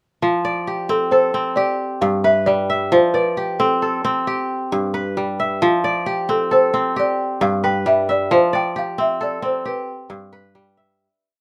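A bright, fingerpicked kora sits up front, its crisp, ringing arpeggios forming an interlocking ostinato that sways between F and G chords in a flowing, joyful West African traditional piece in 12/8. From 0.9 seconds a woody balafon played with soft rubber mallets carries a round, dark, motif-based melody of call phrases. Light reverb frames both instruments before the whole short piece fades out from 8.3 to 11.0 seconds.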